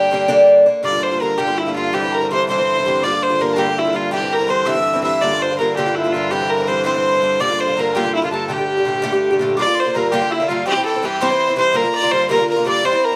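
A Celtic jig in 6/8 drives along at 110 BPM in dotted quarters with a straight feel, set in G dorian and cut from a longer piece, its mood dark and lively. Up front, a single bowed fiddle carries the melody with a nasal, earthy tone, light vibrato and a smooth top. A bright, reedy wooden whistle plays a higher second line in the background, close-miked, with a crisp, chiffy attack and pure vibrato, and slapback echo colours both the fiddle and the whistle. A metallic Irish bouzouki, also prominent, picks the accompaniment on double strings, moving mostly between Gm7 and C with a Gmadd9 before the tune repeats. A full, airy accordion drone with dry tuning sounds from 0.8 to 9.6 seconds, while a plunky, fingerpicked open-back banjo is barely audible for the first 0.5 seconds, all within a light reverb.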